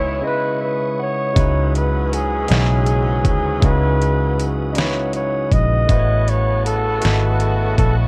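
Yearning and sultry, this slow six-eight R&B excerpt in C# minor moves at 53 BPM, with a breathy, whispered flugelhorn singing the jazz-style melody over a barky, lightly overdriven tine electric piano, a dark, foam-muted fingered electric bass and distant horn-section stabs, while a tonewheel organ holds sustained chords in the background with chorus vibrato and key click through a stopped rotary speaker. The electric piano plays a fill during a silent gap from 0.2 to 1.4 seconds, after which an electronic R&B drum kit with knocking kick, deep snare and metallic hats enters up front, as the chords move from C#m9 to C#m11 and then A69 at 5.9 seconds. The sound is dry and close, colored by worn, warbling cassette tape with drifting pitch.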